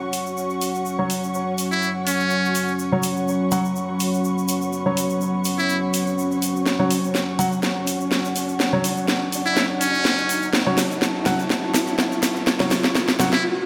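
Bass house at 124 BPM in F# minor with a slight swing, this swaggering, aggressive build-up is cut from a longer piece, with a deep, detuned analog pad holding sustained chords beneath a close, intimate chamber string section played sul tasto and a grainy tube shaker in the background. A garage drum kit with a cracking snare and hi-hats sits up front alongside a buzzy muted trumpet melody with scooped notes and light vibrato, which enters at 1.7 seconds, while mellow grand piano stabs carry a filter sweep and digital delay. A riser enters at 3.7 seconds, a drum fill arrives at 6.7 seconds, and the whole thing sits in a lush hall reverb before breaking off.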